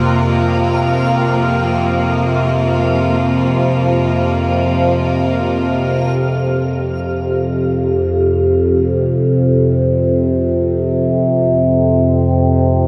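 Drifting in free time, this dark ambient drone feels vast and ominous, tuned slightly low to A4 = 438 Hz and drenched in a huge, dreamy reverb with a 7.8-second tail. Up front, a detuned drone of sawtooth and sine tones with moving overtones and chorus holds from F2 to C3 for the full 12.9 seconds, joined at first by a clear chamber cello section holding biting, earthy bowed chords with light vibrato and shimmer reverb. A reversed, swelling granular texture on F5 hovers in the background, and both cellos and texture stop at 6.1 seconds, leaving the drone alone as the harmony moves from Bb5/F to F5.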